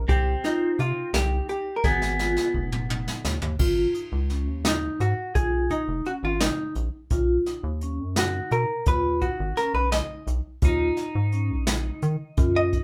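A modest small-room ambience surrounds this short excerpt of progressive instrumental music, played live by a band in one room. It moves in a tense, intricate 5/8 at 171 BPM counted in eighths, set in G# dorian. A dark, compressed hollow-body jazz guitar carries the melody up front, then takes a solo from 3.6 seconds as the harmony moves through G#5, B and D#m. A clean electric guitar adds a warm second line at the start and returns at 10.6 seconds, while a rubbery, nasal square-wave bass bounces underneath. A vibraphone played with medium mallets spins airy, ringing arpeggios with a fast motor vibrato. Brushes drive the acoustic kit, with dark cymbals and a boomy kick, and a drum fill arrives at 1.8 seconds.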